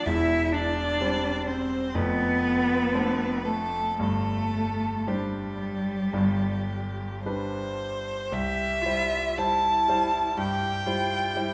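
Tender and serene, this short excerpt from a longer piece is a slow romantic movement for piano trio in C major, moving at 52-65 BPM in 4/4 with a rubato feel. A rich, up-front violin carries the melody with smooth, even bowing and vibrato, sitting between G4 and A5. Beneath it, a distant cello adds a second line from G3 to G4, its bowed tone expressive, with vibrato and portamento. The concert grand piano accompanies with a clear, vintage sound and deep bass, spanning E1 to C5 and placed up front. The harmony moves from C/E through Dm7/F and Gsus4 to G, resolving to C as a new section begins at 8.3 seconds, all bathed in a wet recital hall reverb.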